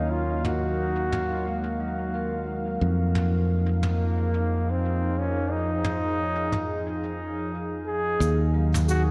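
Spacious and deep, this ambient dub passage, cut from a longer piece, drifts on a gently swung groove. A solo trombone carries the melody up front in a classical style, trailed by tape echo, while a smooth, detuned sawtooth pad holds slow-attack chords coloured by chorus. Underneath, a fingered electric bass sits direct and close, and brushed toms with cabasa, acoustic and rolled off at the top, sound through dub echo from 0.4 seconds. A mellow vibraphone played with soft mallets rings in the background with arpeggios from 1.5 seconds, carrying tape echo and shaped by a filter sweep, and it returns briefly at 8.5 seconds. A very quiet, resonant texture of bubbling random filter steps floats through the mix, and the dreamy mix is soaked in plate reverb.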